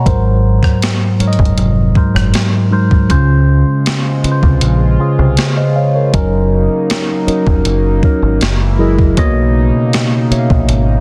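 Dense, heavily limited and dry, this short cut from a longer contemporary R&B piece sits at a smooth, dreamy 79 BPM in 4/4 with a straight feel, in Db major. A mellow, clean tine electric piano carries the accompaniment from the start, its tone colored by a phaser and placed up front. A deep, round picked electric bass with a dark, punchy amped sound holds down the low end, joined by a gated 80s digital drum machine whose thumpy kick, hi-hat, rim click and snare carry a gated reverb that gives the snare a big room-sized snap. At 3.1 seconds a warm analog pad enters at a lower level, its sawtooth tone bright and evolving, thickened with chorus and ring modulation, slow to bloom and long to fade, and pumping under sidechain. The harmony drifts from Ab9 to Dbmaj7, then through Gb6 and Gb13 before settling on Cbmaj9.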